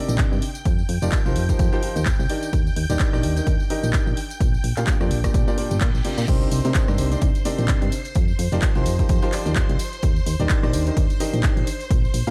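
This short piano house excerpt has a dark, warm production with little reverb, and a bittersweet, soulful mood, moving at 128 BPM in 4/4 with a swung sixteenth-note feel. A boxy grand piano carries the riff throughout, treated with delay and sidechain pumping, while shimmering, vintage string-machine violins hold sustained chords high above it through an ensemble chorus, pumping with sidechain compression as well. Underneath, a round, punchy FM bass with a fast attack and decaying notes anchors the low end, and an up-front, tape-warm electronic kick drives the groove from 0.2 seconds. The house kit adds crash cymbal, handclaps, rim clicks and warm hats in a studio reverb, with a close acoustic tambourine sitting in the background. The harmony moves through F9sus4, Ebmaj7, Bb6 and Cm9, and a reverse cymbal rises from 5.7 seconds to launch the drop at 6.3 seconds.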